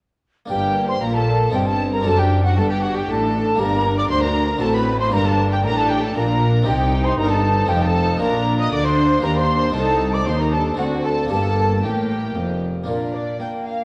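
A worn, warbling cassette-tape sheen and a wet scoring-stage reverb wrap this driving, dramatic baroque-style concerto excerpt in G minor at 116 BPM in 3/4, where a mellow, airy silver flute carries the melody alongside a rich, gut-strung violin section, a close second violin line, a dark, distant viola section and a round Flemish harpsichord in the background, over a reedy cello section and a double bass section that drops out at 12.9 s.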